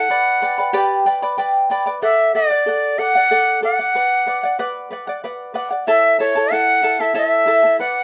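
Earthy and melancholic, this brief cut from a longer Andean folk piece moves at 94 BPM in a straight 3/4. A breathy cane quena carries the melody with a straight, tongued tone, sitting up front in a range from C#5 to F#5. Beneath it, a fingerpicked acoustic charango provides accompaniment, its double strings, some doubled at the octave, giving a shimmering edge between E4 and B5, also placed up front though at a lower level than the quena. Both parts play together throughout the 8 seconds, moving through G, D, Bm and A. A moderate small-room reverb and a dark, warm production shape the recording.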